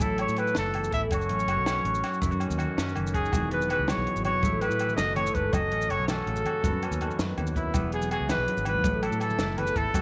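This highlife guitar band piece is cut from a longer performance and has a sunny, danceable mood, moving in a straight-feel 12/8 metre. A warm trumpet carries the solo melody up front in a jazz style with light vibrato, though its tone sits distant and roomy. Beneath it, a concert harp rings out bright fingerpicked arpeggios through a tape echo, while a clean, twangy electric guitar picks its accompaniment in the background. A fingered electric bass gives a round, foam-muted, dark low end, and a compact cocktail drum kit adds a punchy kick and a high-tuned snare with a smooth, rolled-off top. Grainy maracas shake from the start, ringing agogo bells join at 0.2 seconds, and very quiet, damped congas with a thin skin enter at 3.3 seconds, all bathed in a moderate spring reverb over open, colourful harmony built on suspended and add9 chords.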